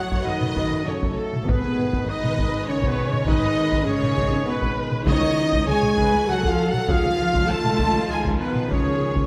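Mellow French horns hold sustained chords at the front of this dramatic, relentless cinematic passage in 3/4, joined by clear, distant trumpet stabs, tight trombone chords, smooth vibrato violins carrying the melody and a second line, expressive violas, lush cellos and rich double basses on the bass, and close, dry taiko struck with hard sticks, while very quiet timpani sound briefly at 5.1 s inside a moderate scoring-stage reverb.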